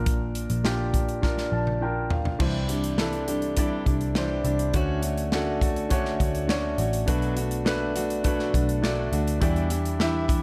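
Light reverb and a small-room ambience give this short excerpt of piano-driven pop an intimate, polished sound with a hopeful, warm mood, moving at 103 BPM in a straight 4/4. A woody upright piano with long sustain sits up front, carrying the accompaniment alongside a round, dark, foam-muted electric bass played with a pick. An airy, natural country drum kit with a punchy kick, a medium-tuned snare, hi-hat, crash and toms completes the opening, with a drum fill and a piano fill arriving together around 1.2 seconds. At 2.4 seconds a full-bodied, fingerpicked jumbo steel-string acoustic guitar enters with a riff as the music shifts into a new section. The harmony moves from Bb through Cadd9, Dmaj7 and Bm7 to Em7, and the piano adds another fill along the way.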